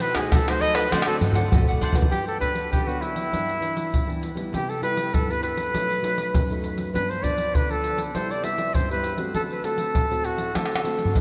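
Playful and sunny, this short cut from a longer samba and choro piece moves at 100 BPM in a straight 4/4 feel, in G major with tuning set to A4 = 438 Hz. A clear, vintage-toned flugelhorn carries the melody up front in a jazz style, with light vibrato and a diffuse ambient delay, and it takes a solo over the opening bars. Beneath it, a nylon-string guitar plays classical-style accompaniment throughout, thumb-plucked and warm, with audible finger squeak. A bright, crisp, picked cavaquinho sits in the background only until 2.1 seconds, when the tune moves from its opening phrase into a new section. Tube shaker, pandeiro, tight surdo and tamborim are played up front with hard hands in a small-room sound, adding drum fills at 0.9 and 10.6 seconds. The whole mix is dreamy and soaked in a lush hall reverb, while the harmony moves through rich seventh chords such as Gmaj7, Cmaj7, B7 and D7.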